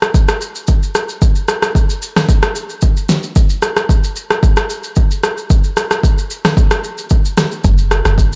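This amapiano excerpt opens with a deep house drum kit, electronic and layered, built from a deep kick, fat snare, rim click and shaker, sitting up front with a tape-warm character from being re-recorded in a small room. The groove moves at 112 BPM in a straight 4/4, carrying a late-night, hypnotic mood. Near the close, at 7.6 seconds, a deep log drum bass arrives on a low F#1, round and percussive with a fast attack and a decaying tail, its FM tone thickened by a noise layer. The production is dark overall, with everything kept below 7.7 kHz and a light reverb around it. The piece is cut from a longer track and runs just 8.4 seconds.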